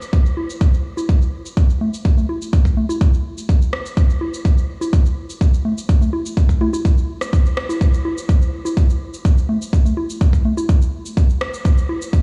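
Light reverb and a digital ambience frame this dreamy, emotional house passage, cut from a longer piece, at 125 BPM in a straight 4/4. A deep, layered electronic kick sits up front, while a faint, produced shaker opens the passage with low-pass filtering and sidechain pumping. Dry, overdriven electronic congas and rim click with an analog grit also carry sidechain pumping, and each of the three parts is placed in a small room reverb.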